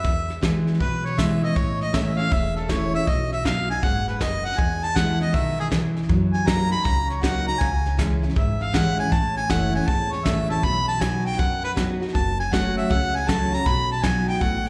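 Honky-tonk and classic country with a heartfelt, down-home mood, swinging at 159 BPM in E major, cut from a longer piece. A clear harmonica with light vibrato and a soft attack sits up front and solos for the full 14.7 seconds, over a full-bodied picked dreadnought acoustic guitar, a woody, growly upright bass played pizzicato in the background, and a brush kit with a fat snare and punchy kick. The changes move through chords such as E, A, B, F#6 and C#m, all set in the lush reverb of a church or concert hall.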